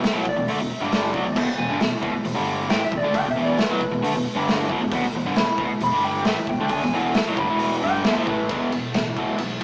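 A clean, twangy lap steel guitar carries the lead in this rowdy, swaggering garage rock excerpt, playing a fingered slide solo high in its range with volume swells before dropping out at 8.5 seconds. Beneath it, a crunchy, double-tracked overdriven guitar sits up front, hammering out a bright picked riff in a straight 4/4. The bass sits further back, growly and amped with tube saturation, adding punch to the low end. The raw acoustic drum kit is gritty and saturated, with a punchy kick, a medium-tuned snare, hi-hat, ride and crash, and a rolled-off top that sits in a pumping stone room. The whole take has the rough feel of a rehearsal-room recording heard through a small speaker, with a moderate stone-room reverb, and the band carries on briefly after the slide solo ends at 8.5 seconds, playing until the excerpt cuts off at 9.6 seconds.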